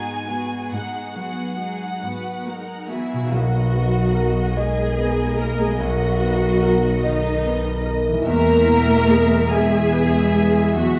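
A reverberant stone-room sound surrounds this hopeful, uplifting cinematic orchestral passage, cut from a longer film score and set in B major. It moves at a slow 48 BPM in 6/8, counted in dotted quarters, with uneven beats and a rubato feel. A warm violin section carries the smooth, even melody with vibrato, while a second, distant violin section adds a lush second line. Beneath them, a present, polished concert grand with deep bass and long sustain plays alongside a focused viola section that sits up front, as a ringing, fingerpicked harp spins arpeggios and an expressive cello section holds the bass in the background. At 3.3 seconds a dark, tight French horn section enters with sustained chords and a distant double bass section deepens the low end, as the harmony moves from G#m7 to Bmaj7 and then to Eadd9.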